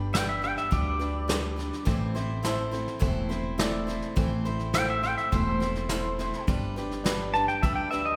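Set in the moderate reverb of a concert hall, this brief, lonesome and brooding honky-tonk excerpt in A minor at 104 BPM features a twangy, up-front pedal steel guitar soloing with fingerpicks, slide and volume swells over a full-bodied picked acoustic guitar, a woody pizzicato upright bass, a clear upright piano in the background with audible action noise, and a soft brush drum kit, as the chords move from G to Am and back to G at 6.5 seconds.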